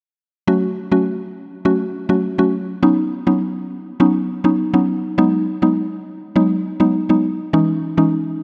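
Set in a moderate, lush hall reverb with dark, warm production, this hypnotic, sultry dancehall excerpt features a lone woody, round mallet-like synth pluck with a warbling chorus and fast, decaying attack, playing up front as accompaniment from 0.5 to 8.2 seconds over chords moving from F#m through Badd9 and G#m7 to C#madd9.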